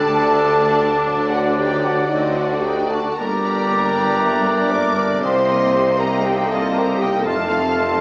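A solemn, melancholic classical passage in G minor opens at 0.0 s with nearly the whole ensemble at a rubato 58 BPM. A focused chamber violin section carries the melody from the background, while a pure, hollow flute, a clear oboe, a very quiet bright clarinet and a lush symphonic violin section weave second lines alongside a present bassoon and an expressive viola section. A warm French horn section holds prominent sustained chords and a vintage trumpet section adds mellow stabs, while the bass rests on bowed chamber cellos and double basses joined by a tuba from 0.1 s, all moving through Dsus4, D, Gm and Cm7 to F in a wet scoring-stage reverb heard from further back with a small-speaker sound.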